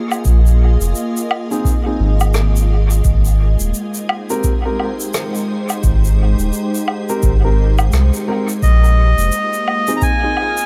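Spacious and hazy, this ambient dub excerpt moves at 86 BPM in 4/4 with a 16th-note swing, opening on a soft, organ-like pad whose pure, detuned tone carries ensemble chorus and built-in reverb over chords shifting from Bb7sus4 to Abmaj7 and back. A round, up-front sub bass with tube saturation sits beneath a deep, tape-tinged electronic kick in the background, while woodblock, shaker and rim click with dub echo add a natural, small-room texture and a dark, woody upright piano places echoed stabs from 1.5 seconds. At 8.6 seconds a reedy, breathy melodica enters up front with its own dub echo, all within a small room ambience.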